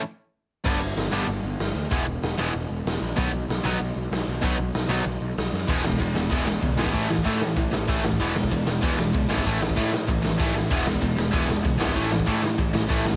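Upbeat, energetic punk rock at 191 BPM in E major, cut from a longer piece, where two bright, overdriven picked electric guitars play riffs (one sitting in the background) over a growly fuzz picked electric bass and a raw garage drum kit with a punchy kick, medium-tuned snare and stone-room sound, starting in half time over G, E and B chords before a drum fill at 5.5 s launches a section that alternates E and A5, with another fill at 10.4 s, all under light reverb.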